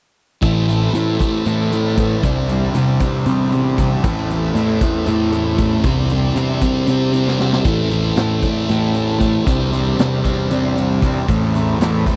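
A dry, close 1970s-style studio sound frames this dark, trippy psychedelic rock excerpt in 7/8 at 232 BPM (eighths) in A minor, where a thick, double-tracked fuzz guitar riff with phaser sits up front over a fuzzy, overdriven picked electric bass and a punchy, mid-forward vintage drum kit with a rolled-off top and a drum fill at 7.3 seconds, while a buzzy combo organ with heavy vibrato holds sustained chords in the background and a very quiet, resonant drone with moving overtones and chorus fades in at 1.7 seconds beneath the alternating Am and Cadd9 chords.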